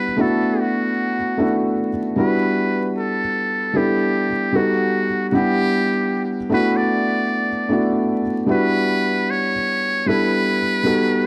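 Dark, vinyl-crackled production and a moderate spring reverb frame this hazy, reflective swung hip hop fragment, where a felt-muted upright piano with soft, mellow tone and audible action noise plays intimate accompaniment through chords like D69, Em9 and B7b13 while a buzzy, breathy trumpet with metal mute and tape echo carries a whispered jazz-style solo melody with light vibrato across the full 11.3 seconds.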